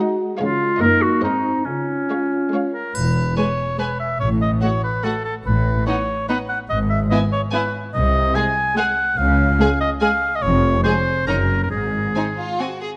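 Magical and quirky, this whimsical 3/4 film cue sets a distant, vibrato-rich violin section's melody over a second violin line, a warm viola accompaniment and a cello bass, while a bright, soft-attack clarinet and a mellow French horn section open the passage before a clear oboe takes over the second line at 2.7 seconds, an up-front double bass section joins and a triangle adds a brief glint, all in a moderate scoring-stage reverb.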